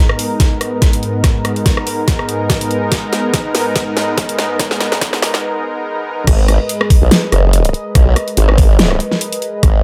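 A lightly reverberant, up-front mix opens this aggressive, menacing heavy wobble dubstep excerpt in G# minor at 143 BPM in half-time with a swung feel, where a lush, detuned sawtooth unison pad holds a G#madd9 chord with sidechain pumping while an overdriven, huge-snared drum kit with bright hats and a knocking electronic kick drive a build-up, drum fill and filter sweep into a break at 5.4 seconds, before a compressed, overdriven formant-sweep wobble bass crashes in on the drop at 6.3 seconds.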